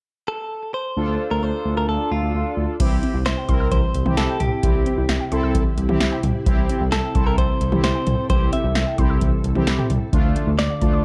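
A bright, twangy clean electric guitar carries the melody from 0.3 s, its picked notes trailed by analog delay, in this melancholic, nocturnal synth-pop excerpt. At 1.0 s a smooth gliding synth bass and a bold, brassy chorused synth brass arrive over a Dm chord. At 2.8 s the harmony moves to C as a punchy, up-front analog drum machine with a deep kick and metallic hats enters, along with a very quiet, silky string machine and a warbling, lo-fi pluck playing arpeggios in the background, all set in light reverb and a dark, warm production.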